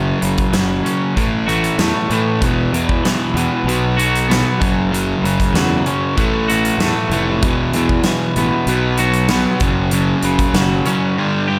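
Quiet-loud alternative rock at 96 BPM in straight 4/4, bittersweet and restless, as a clean, twangy electric guitar picks arpeggios beside an up-front overdriven semi-hollow guitar riff, a growly fuzz-driven fingered bass that drops out at 10.8 seconds, and a huge, punchy arena drum kit of kick, snare and hi-hat, all in light reverb over power chords moving through F#5, A5, E5 and B5 in this short cut from a longer piece.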